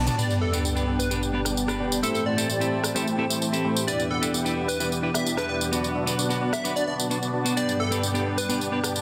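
A straight 4/4 pulse at 130 BPM drives this triumphant, euphoric slice of festival progressive house in G major, opening with a drum fill from the layered electronic house kit, whose metallic hats ride alongside rim clicks, tambourine and toms. A huge, thick supersaw riff sits up front, its detuned sawtooth stack reinforced by a sub octave and an airy noise layer, run through a low-pass filter and digital delay. Beneath it a lush, nasal unison pad holds sustained chords with chorus, while a punchy, catchy plucky lead carries the melody between A4 and E5, its delay echoes trailing behind. A clean, picked electric guitar adds delayed accompaniment, and a sub drop lands at 0.2 s as an impact that lasts until 2.0 s, as a filter sweep on an analog synth pad runs over the rest of the passage. The chords move from G through Am7, Em7 and Bm back to G, all bathed in a wet hall reverb and a dense, heavily limited modern master.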